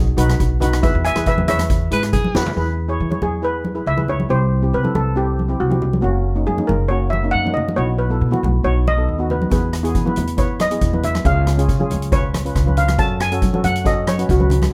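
Calypso with a bouncy, festive spirit, this clip from a longer piece opens with a lead steel pan carrying the melody, its metallic, shimmering tone struck with medium rubber sticks and set close and up front with a touch of plate reverb. A second pan, a double seconds, fills out the harmony beneath it. An upright bass with gut strings plays pizzicato throughout, sounding woody, dark and thumpy, while congas played with soft hands add a ringing, medium-tuned pulse. A street-band drum kit with a boomy kick and medium-tuned snare plays in the opening bars, marked by a brief fill, then drops out when the steel pan solo begins at 2.6 seconds and returns at 9.5 seconds. Just before the solo, a breathy alto saxophone slips in at 1.9 seconds with a short, whispered, intimate line, bright and lightly vibratoed. The recording is close and detailed, with a natural small-room feel.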